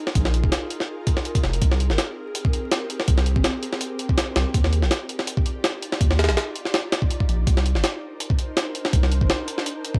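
A dry, gritty recording laced with vinyl crackle carries this dark, raw drum and bass excerpt in jungle style at 164 BPM in C minor, where an up-front, pitched-up sampler-style kit of thumpy kick, high-tuned snare and hi-hat plays alongside a deep, thick, saturated sub bass entering at 0.2 seconds, while a quiet, ethereal pad of detuned, wave-folded, chorused tones with built-in reverb swells in with a slow attack and sustains under Bb7sus4, Abmaj9, Ebmaj9 and Cm9 chords.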